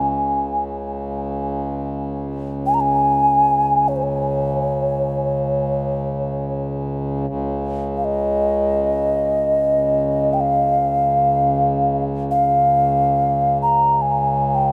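A clay alto ocarina with a pure, hollow tone, vibrato and delay sings its melody between C5 and Bb5 over a reedy, breathing hand-pumped harmonium drone on a low Db2, both up front from the start, in a peaceful, calm, free-time world meditation excerpt in Db major that repeats its opening section at 7.3 seconds, all bathed in a huge, wet ambient reverb.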